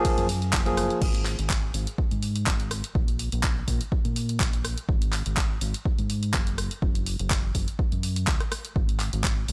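A 124 BPM deep house groove in 4/4, with a light 16th-note swing, drives this moody, warm fragment cut from a longer track. A punchy, layered electronic kick anchors the beat while an up-front drum kit of handclaps, hi-hat, ride, crash and rim click sits in a studio reverb. The piece opens on a drop, where an overdriven tine electric piano fires barky, gritty stabs of an F#maj9 chord through a combo amp, coloured by vintage 12-bit sampler grit, tape echo and sidechain pumping, before falling silent at 1.0 seconds. A dark, round fingered electric bass enters at 0.2 seconds, its direct, amped tone pumping with sidechain compression as the harmony settles around F#sus2 and F#5 chords. The overall sound is dry and hardware-driven, with transformer saturation lending a raw, saturated edge to the mix.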